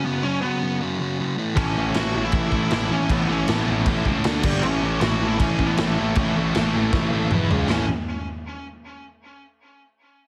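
Energetic and upbeat, this straight-ahead punk rock excerpt in A major charges along at 157 BPM, opening with a lead guitar through a small cranked amp, overdriven with a touch of delay, over a sludgy distorted guitar riff lurking murky in the background. At 1.6 seconds the rest of the band crashes in: an overdriven electric guitar sitting back in the mix, a very quiet bright, double-tracked distorted guitar, a round fuzz-soaked picked bass, and an up-front raw garage drum kit with a tight kick and medium-tuned snare in a stone room. A drum fill at 6.9 seconds leads the chords back to A, all wrapped in light reverb and a heavily compressed radio-style sound.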